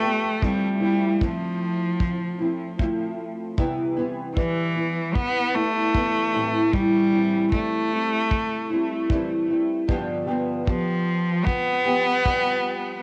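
A straight 4/4 pulse at 76 BPM from a tight, brushed kick drum anchors this heartfelt, sunny acoustic pop excerpt, where a fingerpicked, double-tracked nylon-string guitar moves through Fmaj7, Cmaj7, Am7 and G7 beneath a bowed cello melody that sounds clear and slightly nasal with vibrato and a touch of tape echo, all three parts sitting up front in a small room on a home cassette recording.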